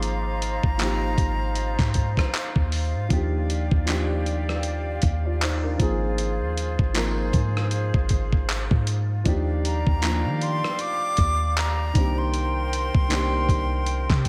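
Contemporary R&B at 78 BPM with a swung 16th-note feel, moody and longing, cut from a longer piece and soaked in dreamy plate reverb. A gritty, compressed sampler-style drum kit of thumpy kick, rim click, hi-hat and handclaps sits up front beside a deep, boomy 808-style bass. A dark, boxy grand piano accompanies while an airy flute group's crisp, vibrato-laden sustained chords pump under sidechain across the Ab6, Ebmaj9 and Cm7 harmony. A breathy, close-miked silver concert flute sings an expressive straight-tone melody through analog delay, briefly at the opening and again from 9.7 seconds.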